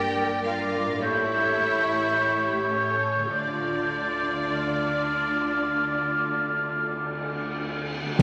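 Yearning and solemn, this short classical excerpt in D minor moves at a slow, rubato 48-54 BPM in 4/4, passing from G minor through A7 to settle on D minor at 3.3 seconds. An expressive violin section carries the melody with rich vibrato, while a lush second violin line sits an octave below and a pure, crisp-edged silver flute floats high above from a distance. A faint, roomy oboe adds its own second line, and a smooth viola section fills in the accompaniment in the background. Beneath them, a dark French horn section holds sustained chords, a mellow, vintage-toned trumpet section adds stabs, and a very quiet concert harp rings out thumb-plucked arpeggios. Bowed cellos and a distant double bass section anchor the bass, all bathed in a wet concert hall reverb, until a close, up-front timpani stroke on D lands at 8.2 seconds.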